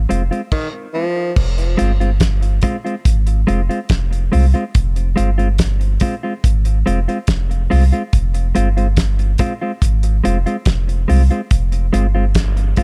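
A dry, close recording with little reverb opens this short cut from a longer dub reggae piece, set in F minor at 71 BPM in a straight 4/4 with a hypnotic, meditative mood. Up front, a soft dub sub bass holds the floor between F1 and C2, its deep, round tone mixing triangle and square wave character with a fast attack and long sustain. A damped 70s acoustic drum kit sits equally close, with a fat snare, tight kick, dark cymbals on crash and hi-hat, and a rolled-off top. A mellow electric guitar plays fingered accompaniment from Ab3 to F4, its clean, compressed sound carried by tape echo. Near the start, a clear tenor saxophone steps in over the band with a brief solo from 0.5 to 1.3 seconds, forceful and punchy with a smooth top and light vibrato, also trailed by tape echo, while the groove rests on a single F minor chord that holds throughout the passage.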